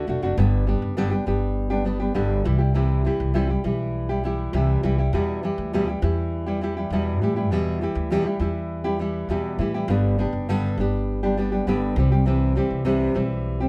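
Acoustic pop in G major at 101 BPM, this easy-going, sunny excerpt, tuned to A4 = 444 Hz, moves through G, C and Em with a straight 4/4 feel. A fingerpicked nylon-string guitar sits up front with a warm, full-bodied, deep classical tone and fresh strings, while a pizzicato upright bass with steel strings adds a woody, warm foundation beneath it. Both parts play throughout the 13.7 seconds, wrapped in light reverb.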